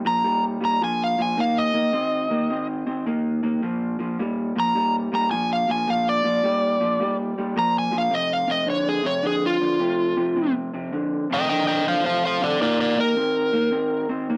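Blues at 107 BPM in Bb, with a swung, rollicking and soulful feel, in a short excerpt cut from a longer piece. A lo-fi, slightly broken-up electric guitar through a small old amp picks a compressed riff up front, while a dark, overdriven slide guitar, played with fingerpicks, carries the solo melody from 0.1 seconds. Both sit in a moderate studio reverb.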